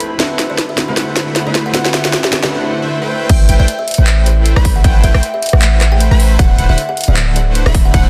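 Future bass at 155 BPM with a half-time, lightly swung feel, bright and lush, this fragment builds from a woody kalimba melody, a fat detuned sawtooth polysynth riff with lush chorus, a dark, mellow grand piano that drops out at 3.1 s, a trap kit with sharp snare, metallic hats, claps and crash, and a very quiet riser, then after a short break hits the drop at 3.3 s, where a boomy 808-style bass and a punchy overdriven kick push up front while a detuned unison pluck arpeggiates in the background with cassette-tape colour and dub echo, the kalimba, synths and bass pumping against the sidechain over D13 and Am9 chords in a dense, heavily limited mix.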